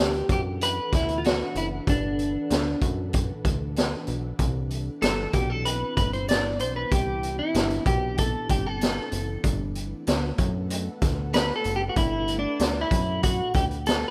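A straight 4/4 groove at 95 BPM from a raw, gritty garage drum kit, with its boomy kick and medium-tuned snare up front, and a punchy, plucky analog bass sets up this sunny, nostalgic bedroom pop excerpt in G major, moving from Gmaj9 to Cmaj7 and back. A clean, picked electric guitar carries the lead throughout the 14.1 seconds, bathed in lush chorus and warbly pitch drift over a mellow, ethereal pad of detuned sustained chords in the background. A very quiet, jingly tambourine joins at 4.4 seconds, all wrapped in the light reverb and studio ambience of a rough home demo mix.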